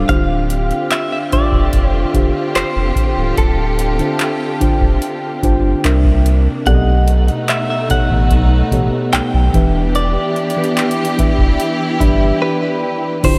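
A booming analog drum machine sets a straight, unhurried 4/4 pulse of deep kick, metallic hi-hat, handclaps and crash cymbal, giving this late-night contemporary R&B fragment a tape-tinged weight. Underneath, a round sine sub bass holds the low end, while muted, felt-like synth keys with chorus lay down dark, intimate chords moving through Dm11, C9, B7b13 and Em7. A close, woody string section sustains bowed chords with vibrato beside them. A bright, clean electric guitar recorded direct carries the melody from the background, its picked notes trailed by spring reverb and diffuse ambient delay. At 12.0 seconds the synth keys step forward with a fill and a second clean guitar enters with arpeggios bathed in lush chorus, just before a break at 12.4 seconds, while the dreamy mix sits in a huge ambient reverb that deepens the mood of longing.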